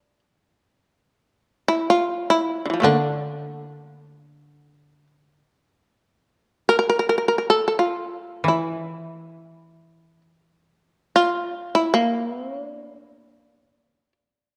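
A dark production with moderate scoring-stage reverb frames this still, solitary fragment of Japanese traditional chamber music, where a bright, buzzing, powerful plectrum-plucked shamisen carries the melody up front throughout while a dry, woody koto played with fingerpicks adds low accompaniment in two brief passages beginning at 2.8 and 8.4 seconds.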